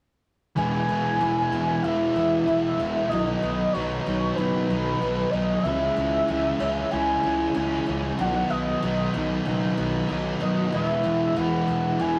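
Rock with a hazy, dreamy mood, this short passage is cut from a longer piece and moves through E, B, C#m, B and back to E in a straight 4/4. A reedy, woody FM lead carries the melody, its sustained notes shaped by chorus, tremolo, vibrato and portamento over a noise layer. Up front, a thick fuzz guitar and a warm overdriven electric guitar play picked riffs, while a growly fuzz bass with overdrive holds the low end. Behind them, a bright, shimmering twelve-string acoustic guitar picks octave-doubled arpeggios. Every part enters together at 0.6 seconds, and the rough rehearsal-room sound is bathed in wet studio reverb and saturation.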